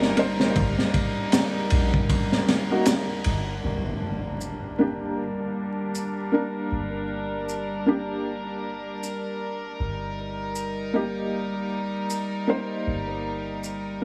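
This dark, hypnotic trip hop excerpt opens with a felt-muted upright piano, a rich chamber string section, a soft 808-style bass and a crunchy breakbeat drum kit all sounding together at a slow 78 BPM in 4/4 with a lazy swing. The piano is mellow and intimate, its thin felt tone coloured by tremolo and tape echo, while the bowed strings carry sustained chords with a reedy, gut-string period character through a low-pass filter. Beneath them the bass is deep, round and sine-like with a touch of tube saturation, and the up-front drums bring a punchy kick, high-tuned snare and dusky ride cymbal with a gritty, rolled-off edge. Compressed maracas mixed with group handclaps slip in at 1.3 seconds, and the drums drop out after 3.5 seconds. At 3.6 seconds an electronic impact lands as the harmony shifts from Eb/G to G minor and a filter sweep begins on the strings, before the chords return to Eb/G. 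Vinyl crackle and small-room ambience wrap the whole piece in a hazy, lo-fi atmosphere.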